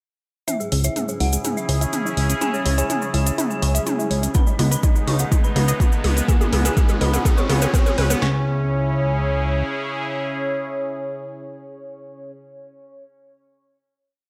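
Melodic techno at 124 BPM in C# minor, cinematic and hypnotic, this short piece is one long build that resolves onto a held final chord at 8.2 seconds. A fat, detuned sawtooth lead with vibrato plays a dark repeating sixteenth-note riff over a pedal note, doubled an octave higher by an eerie, inharmonic FM bell sitting in the background, while a bright, evolving pad with a slow filter swell sustains the chords, moving from C#m to G#m over C# and back. A round, nasal analog pluck runs a 16-step arpeggio under a phaser, and both it and the lead carry filter sweeps through the build as a riser enters at 2.9 seconds. Overdriven deep house drums start with programmed hats and toms in a drum fill, grainy hand-played cabasa sixteenths alongside, and a thick, saturated off-beat bass comes in just after at 0.7 seconds. At 4.3 seconds a deep four-on-the-floor kick and punchy snare arrive up front. 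The synths pulse with sidechain pumping, the lead, bell and pluck trail diffuse ambient delay, and a plate reverb leaves the whole mix dreamy and soaked.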